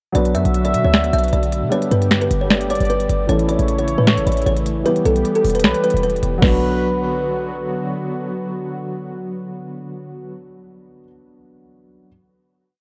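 A melancholic, brooding trap beat in a half-time feel, this short hip hop piece wraps its parts in a worn, warbling old-cassette sound with light reverb and warbly pitch drift. A woody, hollow kalimba carries the looping melody with tape echo, while a sparse, gliding portamento lead with chorus, vibrato and tape echo adds a counter-melody. Underneath, a dark, mellow concert grand piano holds close-voiced chords in the background, and a detuned sawtooth pad with chorus and tremolo sustains soft chords over a Bm, G, A, Em progression. The overdriven trap kit sits up front with a knocking kick, a sharp snare layered with finger snaps, crisp sixteenth-note hats with fast rolls and a crash cymbal, joined by a punchy, tight 808-style bass with long sub notes and pitch slides. The drums drop out at 6.5 seconds and the bass at 8.0 seconds, leaving piano and pad to carry the final Bm chord, the pad fading at 10.3 seconds and the piano ringing on until 12.1 seconds.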